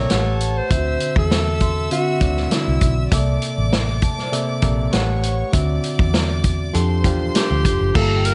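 A breathy, present alto saxophone carries the melody in this short cut from a lush 1970s-style soul piece, singing over the opening three seconds and returning at 7.4 s. Beneath it, a gritty, overdriven reed electric piano played through a combo amp holds down the accompaniment, while a studio violin section bowed sul tasto with light vibrato traces an intimate second line. A foam-muted fingered electric bass adds a round, dark low end, and a vintage drum kit, entering at 0.1 s with punchy kick, medium-tuned snare, hi-hat, crash and dark cymbals, sits up front at 99 BPM in straight 4/4. A large celesta struck with hard felt hammers rings bell-like and sweet in the background. Rich extended chords such as A13, D9, C13 and F69 give the smooth, cinematic mood a plush glow, all set in a small room with a rolled-off, vintage top end.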